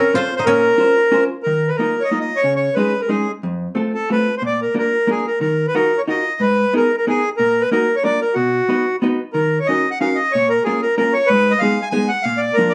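A reedy, up-front accordion carries the melody from the start of this whirling, bittersweet musette waltz in Eb minor at 183 BPM, with a rubato 3/4 feel, while a mellow, woody koto played with fingerpicks adds a dry second line until 3.0 s and a dark, clean, compressed hollow-body jazz guitar picks the accompaniment through shifting chords such as Ebmadd9 and Abm, all heard as a band playing live in one room with light reverb and a soft-topped sound, cut from a longer piece.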